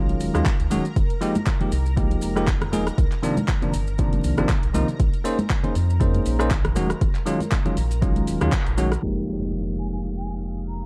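Deep house in F minor at 119 BPM, with a moody, warm feel and a 16th-note swing, cut from a longer piece and set in a dark digital ambience with vinyl crackle and a low-pass filter. A bell-like tine electric piano plays up-front stabs through tape echo and sidechain pumping over a deep, full sub bass with octave, moving through minor eleventh chords from Ebm11 to Fm11, Cm11 and Bbm11. A silky, detuned analog string pad sits in the background, colored by ensemble chorus and a phaser. A punchy, layered electronic kick enters at 0.5 seconds and drives the groove alongside a deep house kit of handclaps, hi-hat and rim click, with close, dry congas and grainy maracas underneath. After a band accent, an electronic impact arrives at 9.0 seconds, and a breathy, hollow concert flute with vibrato slips in at 9.8 seconds through tape echo.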